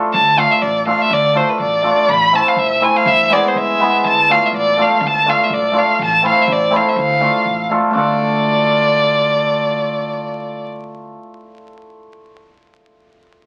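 A shimmering, hammered cimbalom opens this bittersweet, fiery Balkan wedding-band fragment, cut from a longer piece and moving in a swung two-beat feel, joined at 0.1 seconds by a clear, focused solo violin carrying the melody up front with vibrato and a woody, growly pizzicato upright bass sitting low and dark underneath. The harmony circles through minor chords with a tense turn to E before settling back, and a brief new section arrives at 7.9 seconds. The whole fragment is wrapped in a wet studio reverb and the crackle of a very old 78 rpm record, with the violin stopping at 10.7 seconds while the cimbalom rings on to the end.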